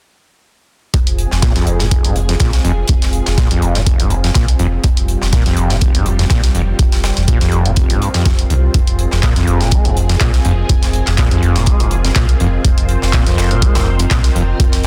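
Raw and gritty, this acid house excerpt at 123 BPM in F minor rides a squelchy, resonant acid bass riff with dub echo over a deep overdriven kick, a round analog bass, and mellow string-machine chords with vintage sampler grit, the acid bass, analog bass and strings all pumping to the sidechain, while crisp high-passed fusion hats and snare mix with a punchy drum machine's handclaps and hi-hat, and a warbling, very quiet tape-like pad joins at 3.2 seconds on a dry, densely limited master.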